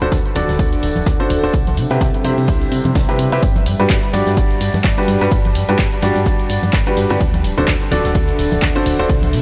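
A light studio reverb gives this short, euphoric piano house cut an open, polished sheen. At 127 BPM in 4/4 with a swung sixteenth-note feel in G major, a clear baby grand piano sits up front playing a short-sustained riff through analog delay, pumping against the sidechain over chords moving from D7 to Cmaj7 and Gmaj7 and back to D7. Beneath it, a round, dark FM bass with a fast attack pumps in step. A punchy analog drum machine with handclaps, hi-hat and shaker drives the groove from the start, and a layered, tape-warm electronic kick joins it at 0.1 s. Very quiet bright tambourine and congas and a smooth, softly brushed jazz kit with a high-tuned snare add acoustic texture. Far in the background, a warbling, nostalgic lo-fi pad built from detuned, wave-folded tones swells in slowly with chorus and its own reverb, lending the feel-good track a mellow haze.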